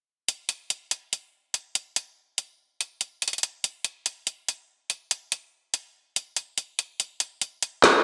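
Hip hop at 143 BPM in a half-time 4/4 feel, this dark, melancholic fragment is cut from a longer piece and carried by an electronic trap drum kit of handclaps, metallic hi-hats and a woody snare from 0.3 to 7.9 seconds, with the kick muted until 7.0 seconds. The up-front, tape-warm drums carry vintage 12-bit sampler grit and gated reverb. A wet plate reverb and bright 1980s-style digital production frame the sound.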